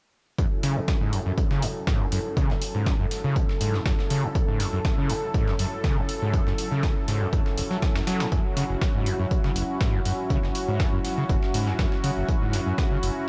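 Hypnotic and gritty, this acid house excerpt sets a squelchy, resonant, overdriven acid bass riff up front over sustained F#m7 chords from a smooth, detuned analog pad with chorus and tremolo, while a punchy electronic kick, a dry overdriven electronic hi-hat and a dusty, compressed sampler-style kit of hi-hat and snare keep a lightly swung pulse through a dreamy, reverb-soaked mix.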